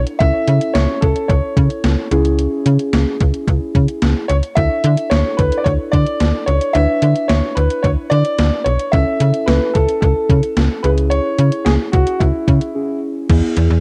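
A gated 80s digital drum machine drives this wistful, nostalgic synth-pop excerpt at 110 BPM in a straight 4/4, its thumpy kick and gated-reverb snare overdriven and gritty with 12-bit sampler crunch, while a snappy, metallic slap-like FM bass sits up front beneath it. Muted, felt-like synth keys add a dark, warbling, chorused bed of accompaniment, and a warm concert grand piano carries the melody with open, long-sustained tone and tape echo, moving through A/C#, C#m and Dsus2 before a short break at 12.8 seconds lands on E at 13.3 seconds. The sound is dry and close, with the character of a home cassette recording.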